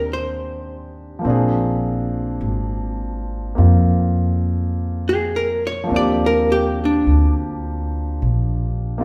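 A lush, reverberant room sound surrounds this tender, romantic jazz ballad, with a trio playing live together in a large studio. At a slow 52 BPM in 4/4 with a gentle swing on the eighth notes, the music sits in Eb major and moves from Abmaj9 to Bb7 at 1.2 seconds before settling on Ebmaj13 at 5.9 seconds. An archtop guitar, miked and amplified, carries the melody as a solo throughout, its dark, clean, picked tone compressed and hollow-bodied as it sings in the middle register. A clear concert grand piano accompanies with natural, deep low end, while a pizzicato upright bass with steel strings provides a woody, warm foundation. All three instruments sit up front in the mix for the full nine seconds of this fragment from a longer performance.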